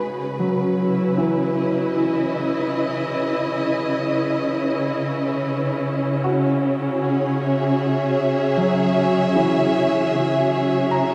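Reflective and spacious, this ambient excerpt in C# minor moves at 77 BPM in a straight 4/4, built on sustained chords from a dark, lush symphonic string section whose bowed, vibrato-rich ensemble sits up front with a smooth top. A soft, felt-muted upright piano plays mellow, intimate arpeggios with a thin felt tone, trailed by a diffuse ambient delay, while the harmony shifts from C#m7 to F#7sus2/C# at 6.2 seconds. A huge reverb with a 7.6-second decay bathes the dark production in a wet, enveloping space.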